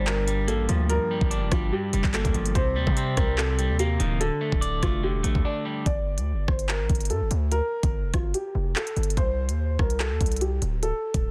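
A hard-hitting 808-style bass anchors this cold, ominous drill excerpt, its punchy, sine-based tone carrying a noise layer, a fast attack and a decaying tail that sits heavy and up front across the full 11.3 seconds. The track moves at 145 BPM in a half-time 4/4 feel in G minor, with a drill drum kit of knocking kick, crisp hi-hats, handclaps and rim clicks roughened by vintage 12-bit sampler grit. A dark concert grand piano carries the melody between F4 and D5, its mellow, boxy sound softened by a low-pass filter. For the first 5.9 seconds, a slightly broken-up electric guitar, picked and compressed with a filtered edge, accompanies the piano before a brief break leads into the second section. The chords run from Gm7 through Cm7 and Dsus4, then settle on Gm and Cm, all in a dry, dense, heavily limited modern mix.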